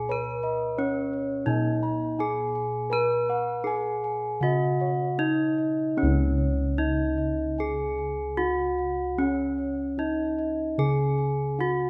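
Bronze metallophones and low bossed gongs sound together from the first moment of this serene, shimmering Javanese gamelan passage, cut from a longer piece: a bright, ringing melody struck with a horn mallet sits up front over the round, dark, beating tones of the gong bass line. A second metallophone adds mellow arpeggios played with padded disc mallets, while higher bossed gongs add arpeggios in the background until 5.6 s. The slendro-tuned ensemble plays in a moderate reverb and moves into a new section at 6.0 s.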